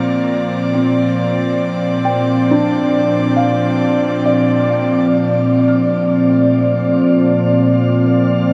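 Luminous and serene, this short ambient passage, cut from a longer piece, drifts at 68 BPM in a gentle 3/4 in Bb major. An airy, breathy pad sits up front, holding sustained chords with a slow attack, long release and a soft chorus shimmer, while a felt-muted upright piano plays mellow, intimate arpeggios in the background, its thick felt tone trailed by tape echo. Beneath them, a very quiet analog drone made of sawtooth and pulse waves evolves slowly under pulse-width modulation and chorus. The harmony rests on a Bb69 chord before moving to Bbadd9 at 5.1 seconds, and at 5.9 seconds a glassy texture of drifting sine overtones joins in the background, calm and bathed in chorus and its own reverb. The whole recording is soaked in a wet shimmer reverb with a long 8.9-second decay, giving the sound a suspended, weightless glow.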